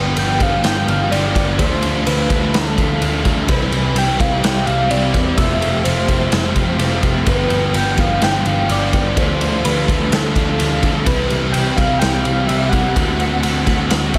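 A raw garage drum kit joins at 0.2 seconds with a straight 4/4 pulse, its punchy kick, medium-tuned snare and ride cymbal sitting up front with a gritty, saturated character and a pumping stone-room sound. This is a hazy, dreamy slice of shoegaze and dream pop rock, cut from a longer piece and soaked in plate reverb over a small room ambience. A dark, foam-muted electric bass anchors the low end with a round, punchy tone, while a biting overdriven guitar plays a riff through analog chorus and a crunchier overdriven guitar sits in the background, trailing reverse reverb. Very quiet beneath them, a compressed twelve-string electric guitar picks clean arpeggios. On top, a soft struck FM synth lead carries the melody with a gentle, keys-like triangle tone that has a fast attack and then decays, colored by chorus and analog delay. The harmony cycles through G7, Dm7, Cmaj9 and Fmaj9 before turning to D7 at 13.0 seconds.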